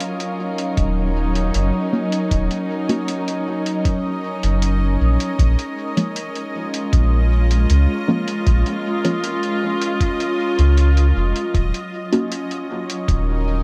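This meditative, spacious ambient dub excerpt opens on a dark studio string section holding sustained chords, bowed sul tasto with light vibrato and a soft attack that feels intimate and up front. Alongside it, a muffled electronic hi-hat trails dub echo, and a bright, bubbling stepped-filter texture shimmers high above, its resonant sawtooth tone stepping randomly through chorus and its own reverb. At 0.8 seconds a deep, round sub bass arrives with tube saturation, joined by a thumpy, compressed kick drum that carries a tape-warm tone from being re-recorded in a small room. From 1.9 seconds, filtered chord stabs add muted, detuned sawtooth hits with short decay and a filter sweep, coloured by chorus, cassette tape character and dub echo. The harmony moves slowly from Ebm7 to Bbm7 and back, all within light digital ambience.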